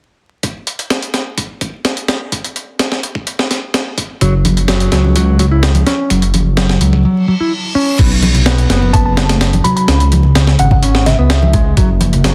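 A gritty, pitched-up, tape-warm breakbeat drum kit with a thumpy kick and medium-tuned snare opens this swaggering, funky 127 BPM breaks excerpt in F# minor, joined at 4.2 seconds by a deep, rumbling detuned saw bass up front and a bright picked electric bass riff roughened by 12-bit sampler grit and dub echo. Thick-skinned congas sit in the background, an electronic reverse cymbal rises into the second section at 8.0 seconds, and a glassy FM synth bell with chorus, telephone filtering and dub echo carries a short, crystalline melody from 8.9 seconds. The dense, heavily limited master carries a light reverb and a layer of vinyl crackle.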